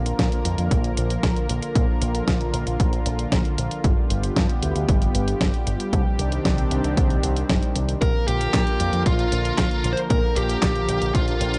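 Italo disco at 115 BPM in Bb major, romantic and playful, where a lush, detuned sawtooth pad with chorus holds chords over Bb, G7 and Cmadd9, a punchy picked electric bass runs through an envelope filter, a clean 12-bit drum machine supplies handclaps, hi-hat and a fat snare beside a punchy analog kick drum re-recorded in a large room, and at 8.0 s a dark, bluesy overdriven lead guitar enters up front with distortion and analog delay, all in a dry, gritty hardware recording cut from a longer piece.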